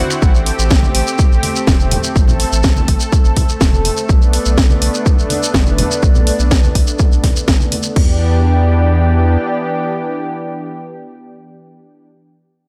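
The recording has a light, digital ambience, with a punchy, overdriven electronic kick pushed up front. This driving, dreamy progressive house fragment runs at 124 BPM in a straight 4/4, set in E minor and moving from Am7 to Bm7 before arriving on Em7 at 8.0 seconds. A lush, detuned sawtooth pad holds sustained chords with chorus and sidechain pumping, over a deep, saturated sine sub bass that also pumps. The layered house kit, re-recorded in a large room, adds a cracking snare, hi-hat, finger snaps and crash cymbal, with pumping on the hats and cymbals. A grainy, close shekere and bright congas played with soft hands in the background fill out the groove. The drums and percussion fall away as the Em7 chord arrives, the bass stops at 9.4 seconds, and the airy pad rings on alone to the end of the cut.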